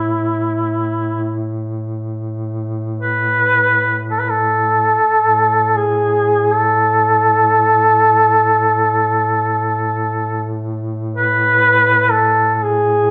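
From the first moment, a warm, up-front duduk sings a mournful, longing Caucasian lament in free time, its soft-attack notes scooped and shaded with vibrato yet sounding distant and roomy, over a quieter mellow duduk holding a smooth-topped drone on A2 with its own vibrato and scooped notes, both steeped in the lingering reverb of a recital hall throughout this 13.1-second excerpt.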